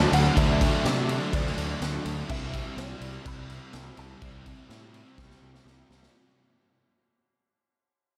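A gritty, punchy garage drum kit sits up front in a bright, pumping stone room, with a fill at 5.2 s, over a growling overdriven fingered bass, while a biting overdriven guitar trailing reverse reverb, a double-tracked cranked stack guitar and a very quiet compressed fuzz guitar churn out riffs alongside a twangy, clean direct guitar melody treated with ensemble chorus and tape echo, all fading out across this dreamy, hazy shoegaze and dream-pop fragment washed in a lush hall reverb as it moves from Dadd9 to Cadd9.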